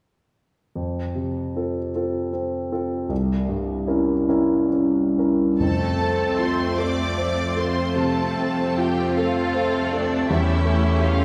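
Classical romantic movement for piano and orchestra in F major, passionate and lyrical, moving slowly in a rubato 12/8 at 43-54 BPM (dotted quarters), with harmony passing from F through C7b9 and back to F before closing on A7/E. A present grand piano with long sustain carries the melody up front alone from 0.8 seconds, and at 5.6 seconds the orchestra joins: a clear, intense violin section shares the melody with the piano while a second violin line, lush violas and smooth cellos sit in the background, mellow French horns hold sustained chords, and rich double basses anchor the bass. Soft-mallet timpani add a round stroke until 6.8 seconds, and the whole passage sits in a spacious scoring-stage reverb, heard from further back in the room.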